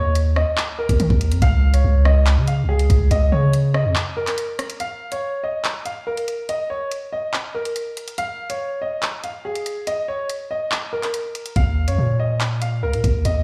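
A woody upright piano carries the melody from the first moment, its natural, up-front tone trailed by delay, while a deep, sine-like 808 bass with a fast attack and long, mellow decay sits beneath it over a Dbsus2 harmony. This excerpt of dark, ominous drill has a half-time feel, and the electronic drum kit arrives almost at once, with knocking kick, warm hi-hats, handclaps and rim clicks placed close at the front of the mix. The bass drops away at 4.0 seconds, leaving piano and drums to carry a long stretch with the chords falling away to nothing. The bass returns at 11.6 seconds on an Ebsus2 chord. The sound has the feel of a big system playing into a bare, modest room, with a large studio reverb adding to the brooding atmosphere.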